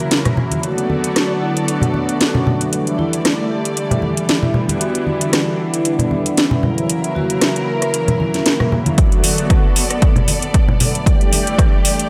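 Lightly reverberant with a sleek, sensual nu-disco feel at 115 BPM in B minor, this excerpt floats a ringing vibraphone melody through tape echo over a smooth, detuned sawtooth pad with chorus and sidechain pumping, veiled con sordino strings that pump too, soft-handed low-tuned congas and an up-front, overdriven house kit with cracking snare and metallic hats. The vibraphone falls away at 8.7 seconds just before a punchy electronic kick arrives at 9.0 seconds to drive a build-up and drum fill.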